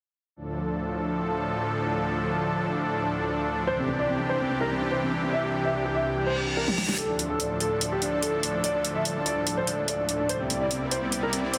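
A dense, heavily limited modern master with a moderate plate reverb frames this chaotic, menacing slice of heavy wobble dubstep in a half-time feel, opening on a lush, detuned supersaw pad holding sustained chords up front. A dark, mellow grand piano with deep bass and tape echo enters at 3.7 seconds with a melody, while a reverse cymbal and riser join from the background at 6.2 seconds. An electronic drum kit with a huge snare, bright hats and toms arrives up front through a short fill at 6.7 seconds, launching a build-up over the same two chords until the cut.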